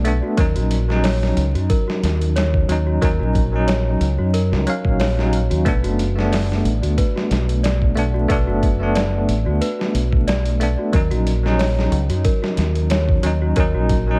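A bell-like tine electric piano, a small celesta and a deep dub fingered bass open this dark, melancholic trip hop excerpt together, with a dusty soul sampler-style drum kit joining at 0.1 seconds. The groove sits at 91 BPM in 4/4 with a light swing on the sixteenths, and the band is tuned slightly flat to A4 = 438 Hz. The bright, clean electric piano carries the accompaniment up front, colored by tremolo, tape echo and the grit of a vintage 12-bit sampler. Delicate, sweet celesta arpeggios with a hard-felt hammer attack drift through a delay, while the round, dark electric bass anchors the low end. The compressed drums bring a thumpy kick, a medium-tuned snare and hi-hat, sounding gritty and re-recorded in a large room, as the harmony moves from D#m7 to Bm7 and back, all over a dry mix laced with vinyl crackle.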